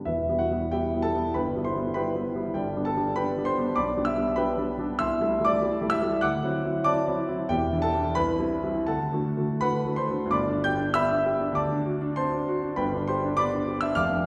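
A warm grand piano carries this hopeful, lyrical romantic character piece alone, its natural tone sitting up front and spanning from deep bass notes to the high treble. Played with a flexible, rubato feel in two, the music opens in a minor shade before turning toward a major brightness at 5.0 seconds. The harmony moves through gently shifting chords, easing into a new section at 10.3 seconds that settles on a homely, resolved close. A generous recital hall reverb surrounds the instrument, giving it the spacious bloom of a church or concert hall. This short passage is cut from a longer piece and lasts about 14 seconds.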